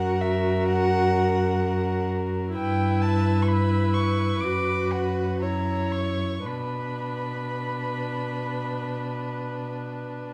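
A muted string quartet opens together in a slow, rubato romantic movement, solemn and yearning, with the first violin singing a veiled melody high above a second violin's close inner line, a viola accompaniment and a dark cello bass that sits up front with light vibrato. Both violins shade their smooth upper lines with vibrato and portamento, while the con sordino viola adds its own vibrato beneath them, all set in a moderate large-studio reverb. The harmony moves toward a B minor chord at 6.5 seconds, and the first violin falls silent at 9.7 seconds just before the other three parts end this cut from a longer piece.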